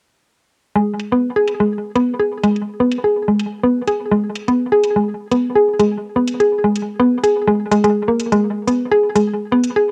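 Heard through the tape-tinged haze of a home cassette recording in a damp little booth, this quirky, clinical minimal techno fragment in G# minor at 125 BPM sets an up-front, woody, round FM synth pluck with a mallet-like attack, chorus and tape echo playing a riff from 0.8 seconds over a faint, metallic, overdriven electronic hi-hat that is layered, muffled by low-pass filtering and re-recorded in a large room.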